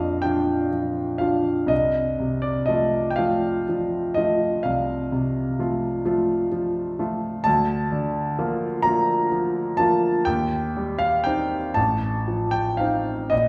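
Heard from further back in a wet recital hall, a clear, natural concert grand with deep bass plays this tender, nostalgic romantic nocturne alone, moving in a free rubato 12/8 through Bb, F/C, Bb/D, Cm/Eb and F7/A before the 13.5-second excerpt breaks off.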